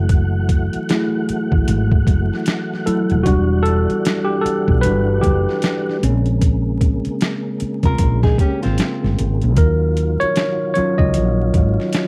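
R&B with a neo-soul lean, this soulful, late-night excerpt moves at 76 BPM in 4/4 with a 16th-note swing, drifting through minor ninth chords from Gbm9 to Ebm9. A gritty, pitched-down sampler-style boom bap kit with a thumpy kick and a dark, round fretless bass sit up front, while a worn, slightly out-of-tune tine electric piano, lightly overdriven through a combo amp, carries the lead from 0.9 seconds over sustained tonewheel organ chords with key click and a slow rotary speaker. A full-bodied, fingerpicked nylon-string guitar adds a brief second line from 7.9 to 9.5 seconds, all framed by a dry, close 1970s-style studio sound with vinyl crackle.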